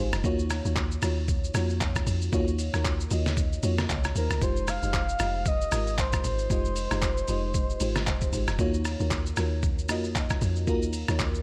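Amapiano at 115 BPM with a hypnotic, deep mood and a swung sixteenth-note feel, cut from a longer piece, where a crystalline, sparkling FM electric piano with chorus opens on a fill and sets out Ebm9 and Fm9 chords over a round, dark log drum bass, while a muffled, pitched-down, tape-tinged sampler-style drum kit of thumpy kick, snare, rim click, handclaps, hi-hat and shaker sits up front, and a breathy, flute-like synth lead with chorus, delay and vibrato sings from 4.2 to 8.3 seconds, all in a dry room.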